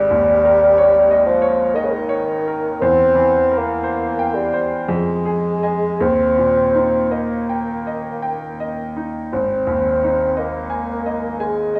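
In a rubato 3/4 at 53-63 BPM, this serene, lyrical romantic classical duo, cut from a longer piece, sets a mellow bassoon with light vibrato singing the melody up front against a bright, brilliant concert grand piano with deep bass in accompaniment, the chords moving from Eb7/Ab through C7/E and Fm7 to Eb before settling on Ab at 9.3 seconds, all within a roomy scoring-stage reverb.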